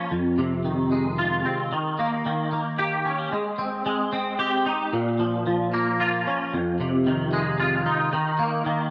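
Light reverb gives this brief rock fragment a touch of space around its single voice, a twangy electric guitar set up front in the mix. The guitar sounds clean and fingered, with a scooped tone shaped by ensemble chorus and digital delay that lend it shimmer and trailing echoes. Playing solo across the full 8.9 seconds, it ranges from F2 up to G4 in a straight three-beat metre. Its harmony moves through Fm7, Eb7, Abmaj7 and Bbm before returning to Fm7 and landing on Eb5 at 8.1 seconds. The mood is euphoric and soaring, and the passage is cut from a longer piece.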